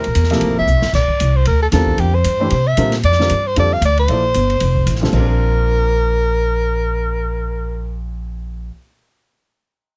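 Spiritual and searching, this swinging modal jazz fragment sets an intimate, whispered soprano saxophone melody with scooped notes and vibrato up front over a woody upright piano with short sustain, a pizzicato, steel-strung upright bass, and an airy small-room drum kit with dark cymbals and a boomy kick that plays a fill at 0.7 seconds, in a close, dry, detailed recording.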